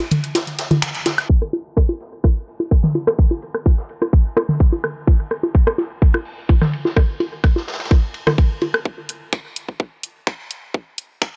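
Techno with a clinical, hypnotic mood, cut from a longer piece and built entirely from drums and percussion in a straight four-four pulse. A booming analog drum machine sits up front with bongos, rim clicks, toms and woodblock, all colored by analog delay, while a vintage acoustic kit adds a natural, studio-room layer of dark cymbals, ride, hi-hat and a medium-tuned snare, its top rolled off and kept low in the mix. A layered electronic garage kit of finger snaps and hi-hat opens the track, then a tight, tape-warm electronic kick lands up front at 1.3 seconds as a filter sweep runs through the middle stretch. After the acoustic kit and drum machine fall away, the garage snaps and hats return at 9.1 seconds for a build-up over the insistent kick. The whole recording has a dry, gritty hardware character, with transformer saturation, cassette grain and a dulled top end in a small room.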